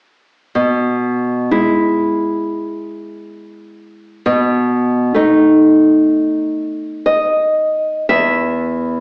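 Romantic solo classical guitar in E major, tender and warm, moving in a rubato 4/4 at 56-68 BPM: a fingerpicked nylon-string guitar, placed up front, plays alone from 0.6 to 9.0 seconds across a range from E2 to E5, passing from E/B to B7 at 4.3 seconds before the chords fall away at 8.1 seconds, all heard from further back in a reverberant recital hall with an AM-radio tone, in a short cut from a longer piece.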